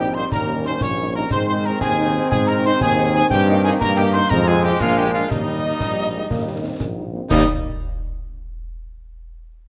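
A clear trumpet section carries the melody in this rousing, proud military-style march for wind band in 6/8, with a hollow, pure piccolo and a smooth-topped euphonium adding second lines, a very quiet French horn section filling in the accompaniment and a bright, tight trombone section sustaining chords in the background, and a roomy, distant tuba anchoring the bass, while dry, close concert snare drum, concert bass drum and dark-toned clash cymbals join at 0.3 s, all set in a moderate recital hall reverb in this short cut from a longer piece.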